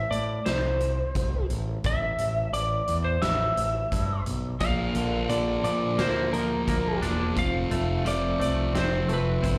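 A short cut from a longer quiet-loud alternative rock song opens with a dark, slightly broken-up lead guitar carrying the melody up front, its tone compressed and trailed by slapback echo and digital delay. Beneath it, a growling picked bass sits just as close, round and overdriven. A huge arena drum kit comes in almost at once, playing in a half-time feel with a fat snare, punchy kick and hi-hat ringing in a big, natural room. At 4.6 seconds the sound thickens as the harmony moves from Am to Bb: a dark fuzz guitar adds a distorted riff, and a bright, twangy clean guitar picks arpeggios shimmering with tremolo and slapback echo. Heard through a club PA with light reverb, the passage feels cathartic and restless, and the harmony shifts to F at 7.4 seconds.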